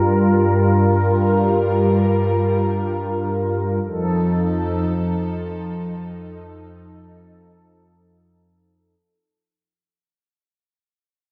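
A brassy analog pad sits up front through the whole nine seconds of this synthwave excerpt, holding sustained chords from F2 up to Bb4. Its bold, detuned sawtooth tone has a soft attack, a filter swell, a moving notch, vibrato and a chorus sheen. The music floats in free time with a driving yet moody feel, tuned to A4 = 443 Hz. The harmony rests on Gm7 before shifting to F7 at 3.8 seconds. A lush hall reverb with a 1.9-second tail wraps the pad in a wet, bright production in the digital style of the 1980s, and the passage fades out across its full length as a fragment cut from a longer piece.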